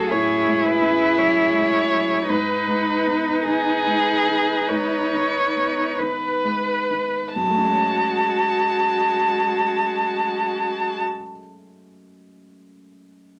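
A wet club reverb with a 0.7-second decay surrounds this intimate neoclassical piece for piano and strings, an excerpt tuned to A4 = 444 Hz. The mood is longing and reflective, in a rubato 4/4 at 43-57 BPM in F# dorian, and the music slows down through its opening passage before a second section begins at 7.4 seconds over an F#madd9 chord. Up front, a dark, expressive solo violin carries the melody with vibrato, soft attacks and portamento, while a focused cello sings a second line close beneath it. A smooth, even viola and a felt-muted upright piano, mellow and natural in tone, sit further back as accompaniment. The three strings stop at 11.0 seconds, leaving the piano alone until it ends at 13.4 seconds.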